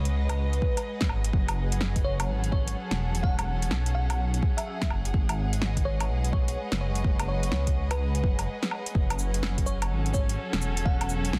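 A swung sixteenth-note groove in four drives this wistful, melancholic future garage fragment, with a deep, tape-warm electronic kick arriving at 0.6 seconds alongside a layered house kit of fat snare, metallic hi-hats, cabasa and woodblock. A dark, detuned sawtooth bass rumbles up front with tube saturation and sidechain pumping, while a smooth bowed string section holds sustained chords that pump in the same way. Above them, a bell-like FM electric piano plays a sparkling melody through chorus, phaser and dub echo, all set in digital ambience with vinyl crackle and a dense, heavily limited master, before a short break at 8.5 seconds.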